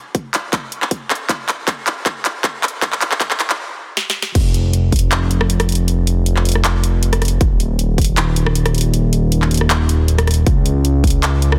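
A half-time pulse in 4/4 drives this lush, dreamy future bass passage, cut from a longer piece. It opens with a build-up of drum fills, the trap kit layering handclaps, rim clicks, bright hats and a sharp, softly clipped snare over a filter sweep, while a punchy, overdriven electronic kick sits up front. A brief stop lands at 3.6 seconds before the drop hits at 4.4 seconds. There the fat analog bass enters, a thick, detuned sawtooth tone with a fast attack and sustained body, pumping against the sidechain in its low register. The kick drops in and out through the drop while the trap kit carries on to the end, all set in a digital ambience with a dense, heavily limited modern master.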